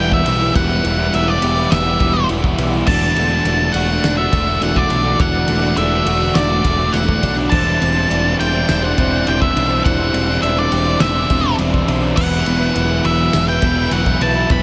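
Drenched in a huge, dreamy reverb, this cathartic, melancholic post-rock fragment in E minor at 103 BPM puts a dark octave-fuzz lead guitar with analog delay up front over a twangy clean electric guitar playing delayed arpeggios, a bright crunchy overdriven guitar and a murky sludgy guitar playing riffs in the background, a growling overdriven picked bass, and a loose acoustic indie kit with a fat snare, punchy kick, shadowy cymbals and a pumping room sound that enters at 0.1 s, as the chords move from Em through Dadd9/E and Csus2/E to Bsus4/E.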